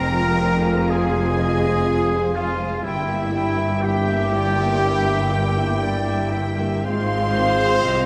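A dark, reverberant scoring-stage sound frames this 8.1-second excerpt from a slow, elegiac romantic orchestral movement in F minor, moving with rubato at 61 BPM in 4/4 over Fm, Edim/G and Fm/Ab chords. A rich, bowed violin section carries the melody in the background, while a bright silver flute with a crisp attack, a very quiet clarinet, a distant oboe and a second violin section play counter-lines alongside a lush viola section. Sustained French horn chords and warm trumpet stabs sit behind, as clear cello and double bass sections anchor the bass, the double bass placed up front.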